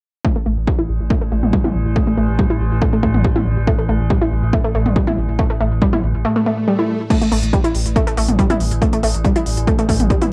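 Driving peak-time techno with a relentless, intense mood, this excerpt from a longer piece runs in a straight 4/4 metre. A punchy, layered electronic kick drum sits up front with a tape-warm character, joined by a deep, thick sine sub bass holding A1, saturated and pumping. An analog pluck carries the riff between G3 and E4, its detuned sawtooth and square tones bright and round with a noise layer, chorus, tube saturation and tape echo. Beneath it, an eerie, metallic inharmonic drone warbles between A2 and E3, its FM and wave-folded tone blooming slowly with chorus and built-in reverb. The techno drum kit enters at 1.4 seconds with smooth, filtered hats, crash cymbal and toms. Filter sweeps move across the drums and synth through the first section, and an electronic swell at 6.4 seconds leads into the second part, all heard with light reverb and the soft grain of a home cassette recording.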